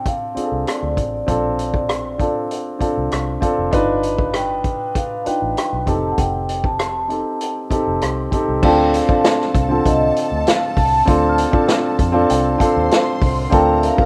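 A dark, mellow concert grand piano sits up front in this romantic, lush 1970s-style soul piece, its deep bass chords supporting a ringing, airy vibraphone melody played with soft mallets and a slow motor vibrato. A punchy, rolled-off vintage drum kit with rim clicks, hi-hat and crash is joined by a round, foam-muted fingered electric bass, the harmony moving from Bbmaj9 through G7b13 and F7 to Dm7. At 8.6 seconds a smooth, bowed string section enters in the background with analog delay, and at 8.9 seconds a very quiet, bell-like celesta adds delicate sparkle, all in a rough home demo mix with studio reverb cut from a longer piece.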